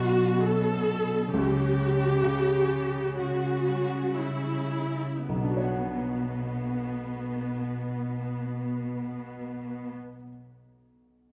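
Sorrowful and moving, this short cut from a longer cinematic film score unfolds in B minor at a rubato 54-70 BPM in 4/4, easing to a slower pace over its first 5.3 seconds. A felt-muted upright piano supplies soft, intimate accompaniment with a thin, short-sustained tone, while a concert harp adds very quiet arpeggios that sound bright and ringing. A viola section adds lush, expressive bowed accompaniment with vibrato, its symphonic sound at once up front and distant, and a cello section holds the bass with a smooth, even tone. The harmony moves from Bmadd9 to C#dim before returning to Bmadd9 as the second passage begins. The strings stop at 9.9 seconds, the harp rings on until 10.3 seconds, and the piano continues until 11.3 seconds, the whole set in a dark, warm production with a moderate scoring-stage reverb.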